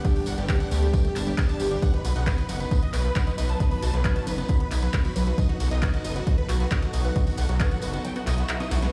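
Heard on a big sound system in a bare room with large studio reverb, this euphoric, soaring uplifting trance excerpt runs at 135 BPM in 4/4, moving from Gadd9 to B. A huge, bright, detuned supersaw lead carries the melody through phaser and tape echo, while a tight, mellow sequenced synth plays arpeggios in the background with chorus and digital delay, and a gritty, saturated sawtooth bass enters at 0.3 s; all three synths pump with the sidechain. An up-front layered kick drives until 7.7 s alongside an overdriven analog drum machine of punchy snare, handclaps, hi-hat and ride, plus a jingly tambourine, and a drum fill at 8.7 s lands under a background electronic swell.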